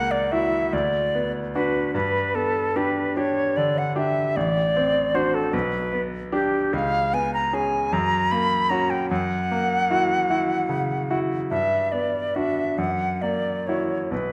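A pure, vibrato-laden silver flute carries the yearning, melancholic melody up front, its crisp attack ringing between G4 and B5 over a bright baby grand piano whose polished, brilliant accompaniment reaches down to A1 with short sustain. This romantic classical duo moves in a slow, rubato 6/8 at 50 BPM in dotted quarters, tuned to A4 = 438 Hz, with harmony drifting from Bm/D and G through D7/A and C#5 to repeated F#7 chords and a Gmaj7 near 11.5 seconds. A wet recital hall reverb surrounds the pair throughout this short excerpt, which is cut from a longer piece and runs 14.3 seconds.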